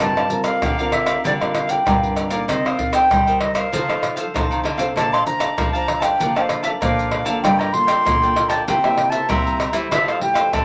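Joyful and sunny, this short excerpt cut from a longer samba and choro piece moves at a straight 97 BPM in 4/4. A close-miked wooden flute carries the melody with an airy, woody tone, tongued notes and vibrato, sitting well forward of the other parts. A bright, crisp picked cavaquinho and a fingerpicked classical nylon-string guitar, with audible finger squeak, fill out the accompaniment, while a second nylon-string guitar with fresh strings supplies a deep, full-bodied bass line. Up front, a compressed and saturated percussion group of egg shaker, tight surdo, pandeiro and tamborim is struck with hard hands. The harmony moves through jazzy sevenths and ninths from Gm7 toward Fmaj9, and the whole ensemble plays throughout in a wet small room.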